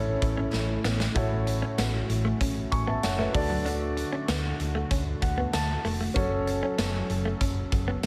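A straight, steady 4/4 pulse drives this nostalgic, uplifting piece of 1980s-style pop, cut from a longer song. A big rock drum kit enters at 0.2 s with a punchy kick, a medium-tuned snare, hi-hat and tambourine, sitting up front with a natural, roomy sound and adding a short fill between 0.5 and 1.2 s. Beneath it, a dark, round hollow-body electric bass holds the low end while a warm concert grand piano plays deep-bottomed accompaniment and adds a fill between 4.9 and 6.2 s. In the background, a chorused pulse-width pad sustains shimmering, retro, mellow chords with a soft attack. A clean, compressed electric guitar, recorded direct and picked, plays a riff through lush chorus and delay. The harmony moves from A to A6, then to D and F#m, all set in light reverb with a small room ambience.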